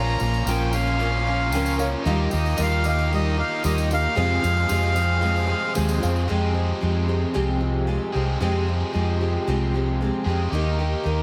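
A reedy accordion melody opens this wistful, dusty snippet of folk and heartland rock in F minor at 113 BPM, riding over a bright, shimmering octave-doubled twelve-string with audible finger squeak, a biting double-tracked overdriven electric guitar riff, and a round, dark hollow-body bass sitting up front. Behind them, a worn, intimate baby grand with audible action noise adds a fill at 1.3 seconds, a fat tonewheel organ with key click and a slow rotary speaker holds very quiet chords, and a jingly, close tambourine ticks in the background. The accordion drops out at 5.7 seconds, and from 6.3 seconds the twelve-string, overdriven guitar and bass carry on alone through Fmadd9 toward Eb under light reverb.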